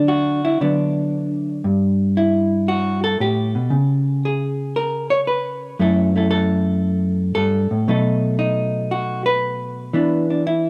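A dry, close 1970s-style studio sound with light reverb frames this sophisticated, swinging solo jazz excerpt, where a dark, clean, fingered hollow-body electric guitar sits up front alone, moving from D6 colour through F#m7 and B7 to a bare E7 around 9.9 seconds as the passage is cut from a longer piece.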